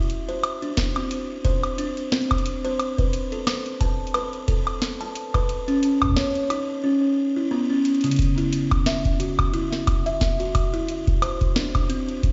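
Swung sixteenths at 89 BPM in 4/4 drive this playful, wistful IDM fragment, where a booming analog drum machine with crisp snare, metallic hats and woodblock sits up front beside a deep electronic kick that enters at 0.8 s, while a buzzing, woody kalimba spins mellow, ringing arpeggios from C#3 to A5, the drum machine and kalimba both trailing tape echo, and a drum fill at 7.9 s tips into a new section at 8.2 s, the whole piece sounding as if played through a big sound system in a bare stone room with a muffled top end.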